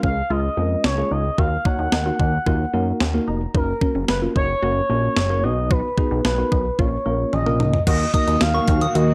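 A clean 12-bit drum machine with a thumpy kick and medium-tuned snare drives this straight 4/4 synth-pop at 111 BPM in Eb minor, with a fat, saturated analog bass up front and a worn, slightly out-of-tune tine electric piano comping throughout, adding a fill at 2.7 seconds. A smooth, expressive sawtooth lead with portamento and vibrato carries the melancholic melody over squelchy, resonant blip-pluck arpeggios tucked in the background. Near the end of this cut-from-a-longer-piece fragment, a drum fill ushers in vintage string-machine cellos at 7.9 seconds and a pure FM bell line at 8.1 seconds, all sitting in light digital ambience.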